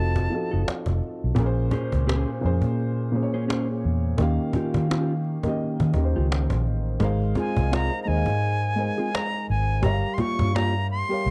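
Swung sixteenths in 4/4 give this smooth, sultry R&B and neo-soul excerpt its relaxed sway, with a woody cajon entering at 0.2 seconds under a round, punchy, foam-muted fingered electric bass and a dark, slightly detuned upright piano that sits up front with long sustain. A clean, compressed electric guitar adds a second line through spring reverb. An airy, reedy concert flute with vibrato and slapback echo voices a brief melody at the opening, then returns at 7.4 seconds over chords moving from F7b9 through Bbm9, Eb9 and Ab6 to Gm7b5, all captured in a dry, close 1970s-style small-room sound.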